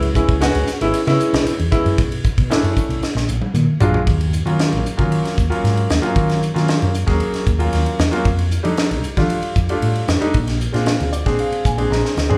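A straight 4/4 groove at 115 BPM drives this funky electric jazz fusion clip, cut from a longer piece, with a crisp, high-tuned snare and tight kick on an up-front acoustic kit and a woody, round, punchy fretless bass anchoring the low end throughout. A clear concert grand piano with deep bass and short sustain carries the accompaniment through chords such as C#m7, Ebm9 and F13 as the harmony settles into Eb dorian from 4.1 s. Drum fills arrive at 3.0 and 11.9 s and a piano fill begins at 10.9 s, all set in the moderate reverb of a large studio where the band plays live together.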